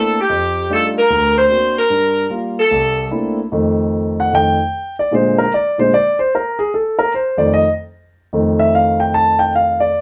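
Swinging jazz with a brassy, energetic mood, heard in a short cut from a longer piece. A tight, clear saxophone section with light vibrato and plate reverb states the melody until 3.1 seconds, over a warm concert grand piano with deep bass. From 3.5 seconds the piano takes a solo through a progression of F9, Bb7 and F7, all set in a wet club ambience.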